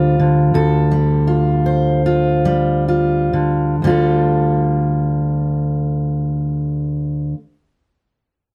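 Close, detailed microphones and a light reverb give this short excerpt an intimate, up-front sound. It is a solo folk piece in D minor for fingerpicked steel-string acoustic guitar, with a haunting, wistful mood in a straight 4/4 and tuned to A4 = 443 Hz. The dreadnought guitar sounds full-bodied and plays alone from 0.0 to 7.4 seconds, ranging from D2 up to C5 over a D minor chord. The tempo sits between 64 and 88 BPM and slows down through the first 3.8 seconds before a new section begins.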